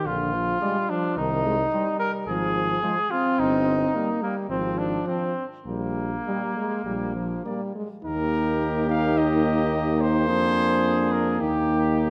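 A warm flugelhorn second line and a French horn with vibrato and a smooth top open this fragment of a triumphant, noble classical brass quintet in Eb major at a rubato 107 BPM, joined at 0.1 seconds by a distant, roomy bass trombone and at 0.6 seconds by a mellow trumpet carrying the melody and a clear euphonium in the background, all set in a moderate concert hall reverb as the harmony moves from Bb7 through Cm and Fm/Ab to settle on Eb by 11.4 seconds.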